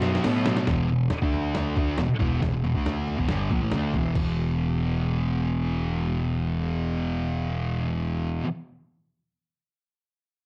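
A gritty, pitched-down sampler-style drum fill opens this swaggering, menacing garage rock fragment, the compressed kit with its thumpy kick and medium-tuned snare dropping out at 4.3 s, while a thick, double-tracked fuzz guitar riff sits up front over a growling, overdriven picked bass, the mix caught on cassette tape in a moderate club reverb.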